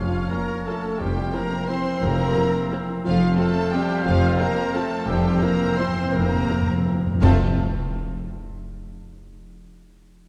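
A lush violin section carries the melody of this elegant, sweeping orchestral ballroom waltz, its vibrato expressive and its attack soft, while a second, distant and very quiet group of violins adds a supporting line beneath. Around them, an airy flute ensemble with lifted highs, a roomy oboe with light vibrato and a mellow clarinet weave further lines in the background, as mellow French horns and a tight, very quiet trombone section hold sustained chords. A ringing, thumb-plucked concert harp spins arpeggios, violas join with focused, close accompaniment from 0.3 seconds, and smooth cellos with clear double basses anchor the bass. Rubato gives the 3/4 lilt a gently flexible pulse, and close, dry timpani strokes enter at 1.0 seconds before a fill from 5.1 seconds leads to a band accent at 7.2 seconds, marked by dark clash cymbals and concert bass drum. The production is dark and warm, bathed in a wet concert hall reverb, and this passage is cut from a longer piece.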